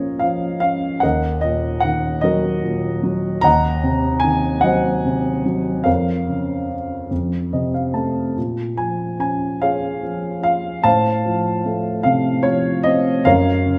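Calm and intimate, this brief classical excerpt for solo piano unfolds in a lyrical, rubato 6/8, its dark, mellow baby grand sitting up front with audible action noise and a vintage character, adding a short fill at 7.1 seconds over minor-key harmony that settles on a Gb chord at 13.3 seconds, all set in a moderate recital hall reverb with lossy compression artefacts.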